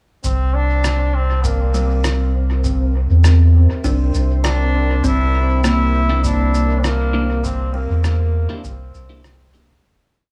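A brilliant, distant trombone opens this peaceful, hazy ambient dub piece, its motif-based call phrases trailing dub echo over a round, up-front sub bass of long gliding notes, a soft tape-toned electronic kick, and a muffled, pitched-down cabasa and rim click beat in a small room. A bubbling, resonant filter texture holding a high note and a buzzing, woody kalimba cycling four slow arpeggio loops of unequal length drift in, while a deep, dark, detuned pad fades in beneath with chorus and reverb. From 6.1 s a clean electric guitar adds sparse phased chord stabs, one shape moved in parallel, as the echo-heavy mix fades out.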